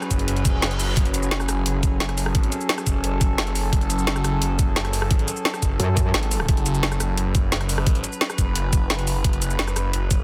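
A straight 4/4 drum and bass groove drives this dark, futuristic slice of technical drum and bass, built on an overdriven, knocking electronic kick. Around it, an up-front layered kit of woody snare, rim click, shaker and bright hi-hats carries its own overdrive and studio reverb. Underneath, a thick, swirling detuned saw bass rumbles low through a phaser and saturation, pumping against the kick. Behind everything hangs an eerie, inharmonic FM drone of sustained chords with a slow attack, chorus, 12-bit sampler grit and a long reverberant tail. A soft reverse cymbal rises at 0.5 seconds, and a brief, aggressive metallic wobble bass with chorus flares at 5.8 seconds. The dense, heavily limited master keeps a light digital ambience around this short cut from a longer piece.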